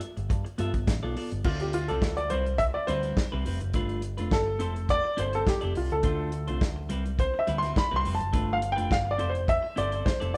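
A warm baby grand piano takes the lead from 1.5 seconds, playing a solo that sits up front with an intimate, natural tone, short sustain and audible action noise. This is a danceable, sultry disco excerpt at 104 BPM in 4/4 with a straight feel, cut from a longer piece and moving through G9, Dm7, Cmaj7 and Fmaj7 harmony. Underneath, a soul drum kit with crash, hi-hat, kick and snare sounds dry and dark, with a tight kick, a medium-tuned snare, dark cymbals and a rolled-off top. A picked electric bass through an envelope filter adds a round, punchy, amped low end, while a clean, compressed electric guitar supplies bright, twangy accompaniment with a warbly pitch drift. The band plays live together in one large studio, with moderate reverb giving the room a natural sense of space.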